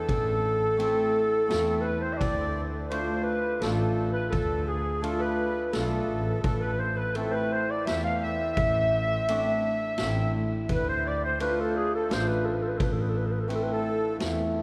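Soulful yet festive, this klezmer fragment in 3/4 sets a breathy, dark clarinet solo with vibrato and scooped notes over a sweet, reedy accordion second line, a shimmering hammered cimbalom entering at 0.8 seconds, a bowed, muted double bass up front, and a street-band drum kit with a boomy kick and dark cymbals, all bathed in a vast cathedral reverb.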